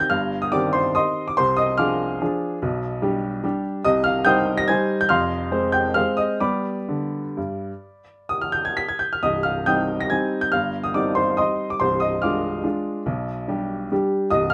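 A classical piano waltz in C minor, wistful and elegant, moving in 3/4 with a rubato feel at roughly 121-153 BPM, cut from a longer piece. A single upright piano plays alone throughout, its tone clear, woody and vintage, sitting up front across a span from C1 to B6. Close, detailed miking and little reverb keep the sound intimate as the harmony circles from Cm through Fm and G and back to Cm around 9.2 seconds.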